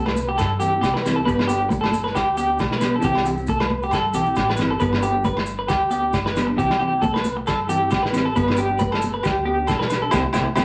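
A bright, twangy electric guitar through a small old amp opens this carefree, danceable highlife fragment, picking up-front arpeggios with a slightly broken-up edge and a tremolo shimmer, while a woody, growly pizzicato upright bass sounds beneath it from the very start. A muffled, lo-fi vintage drum kit with a tight kick and medium-tuned snare joins almost at once, along with ringing agogo bells and damped, high-tuned congas played with soft hands, the bells and congas sitting in the background. Grainy maracas add a faint texture further back, and at 0.6 seconds a dark, clean, fingered second electric guitar enters as accompaniment, colored by a phaser. The swung groove rocks between C and G chords throughout, and the whole band hits a shared accent at 10.1 seconds. A wet club reverb gives the lo-fi mix a short, lively room sound.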